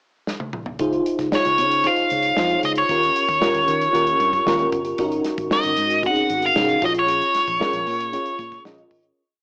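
Polished 1980s jazz-funk pop in Db major, this complete piece moves at an upbeat, urban 115 BPM in a straight 4/4. A modern studio drum kit opens with a fill at 0.3 seconds during the pickup bar, its tight kick, medium-tuned snare, hi-hat and toms settling into a crisp sixteenth-note groove with a dark, rolled-off top. At 0.8 seconds a bell-like FM electric piano arrives up front with sparkling, warbling syncopated chord stabs in rootless voicings and grace notes, treated with ensemble chorus, while a foam-muted fingered electric bass plays an agile, syncopated line with a round, punchy tone. From 1.4 seconds a nasal, overdriven lead guitar through a parked wah carries a motif-based melody in sentence phrases over chords of Dbmaj7, Eb9, Ab9sus4 and Bbm7. A moderate spring reverb and a cassette home-recording character give the mix a small-speaker sound before the whole piece fades out toward its close.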